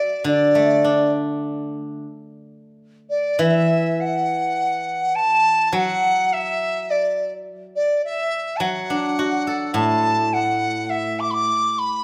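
A wet recital-hall reverb, with a tail of about 1.8 seconds, surrounds this short excerpt from a longer piece of Chinese traditional chamber music. The mood is pastoral and graceful, and the pulse moves in a loose rubato over a 4/4 metre. Up front, a bamboo dizi carries the melody with a hollow, airy, straight tone, tongued notes and the faint buzz of its membrane, though it also sounds slightly distant. Beneath it, a steel-string zither played with fingerpicks supplies accompaniment with a silvery, ringing voice from its lower and middle register. The music shifts into a new section at 2.8 seconds. The zither stops at 11.5 seconds, leaving the dizi alone until the close at 12.0 seconds.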